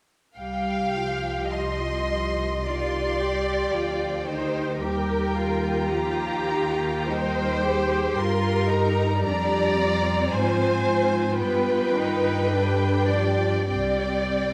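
Bowed strings open this slow, yearning romantic movement for string orchestra in C minor at 54 BPM with free-flowing rubato: a lush, smooth first violin melody sings high over an expressive, soft-attacked second violin line up front, focused violas and up-front double basses with light vibrato and a smooth top, before rich cellos join at 2.6 seconds, all bathed in a melancholic scoring-stage reverb.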